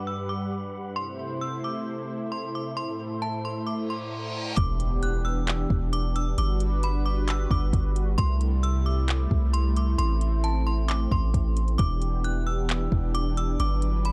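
Floating and blissful, this atmospheric cloud-rap excerpt moves in a half-time feel and drifts through a dark, warm digital ambience. It opens on a smooth sawtooth analog pad of detuned, slow-blooming chords with a moving notch and gentle sidechain pumping, beneath a metallic FM bell whose inharmonic, ringing tones carry the melody through chorus, a low-pass filter and tape echo. An airy, breathy wind-like noise texture hangs in the background with its own reverb. At 3.9 seconds an electronic reverse cymbal rises into an impact, and at 4.6 seconds a deep, sine-toned 808-style bass and a smooth R&B drum kit of soft kick, metallic hi-hats and handclaps arrive up front, the kit roughened by vintage 12-bit sampler grit. The harmony circles through Gmaj7, C6, Am and Em7, and the wind texture returns at 12.8 seconds before the cut.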